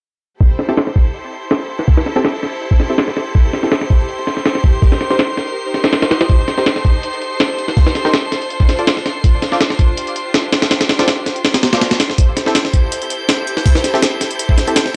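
Atmospheric and nostalgic, this drum and bass excerpt in A minor at 163 BPM sets a gritty, pitched-up sampler breakbeat with a thumpy kick and filter-swept hats and snare up front beneath lush bowed symphonic strings holding vibrato chords, a nasal, band-passed sawtooth stab with chorus and dub echo sitting in the background, and a glassy, drifting sine texture high above, all moving through Am7, Cm7 and Dm7 in a dry, gritty hardware sound.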